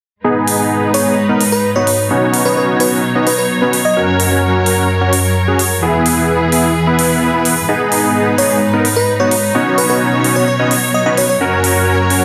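This excerpt of festival progressive house opens with a rich symphonic string section holding sustained chords beneath huge, detuned supersaw chords that carry the riff, both starting at 0.2 seconds in G# minor at 129 BPM in a straight 4/4. The strings are smooth and bowed with light vibrato, filtered to a distant ensemble sheen, while the sawtooth stack sounds lush and bright up front, roughened by vintage 12-bit sampler grit and trailed by delay. A crisp, overdriven electronic hi-hat joins at 0.5 seconds, its layered hats given the air of a large room. A sparkling, bell-like FM electric piano carries the melody from 0.9 seconds, its decaying notes shimmering through chorus and delay before returning later for a second phrase. The harmony moves through G#m, Badd9, F# and E, giving an anthemic, powerful lift, all set in light digital ambience and a dense, heavily limited modern master.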